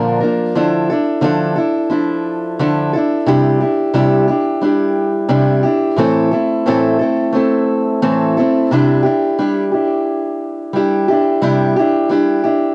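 A picked acoustic archtop guitar carries this short rock excerpt alone at 88 BPM, its dark, boxy tone sitting up front with audible finger squeak and the dusty character of a cassette home recording under light reverb. The mood is wistful, moving through Bb, Dmadd9, Cadd9 and Am before a second section settles on Cadd9 at 8.7 seconds, with the guitar ranging from A2 to Bb4 in a straight 4/4 and tuned slightly sharp to A4 = 443 Hz.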